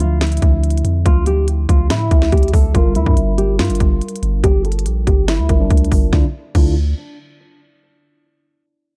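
From the first beat, this eerie, menacing half-time trap fragment sets a bright, fingerpicked nylon-string guitar melody, dulled by a low-pass filter, over a mellow tine electric piano thickened with ensemble chorus, a deep sine 808 bass whose long notes decay, and an up-front electronic kit of hard-clipped kick, sharp snare, crisp hats and crash, in a dark, dry production shaped by a filter sweep that runs until 6.1 seconds, when the harmony moves from Gm7 back to Dmadd9 as the clip closes.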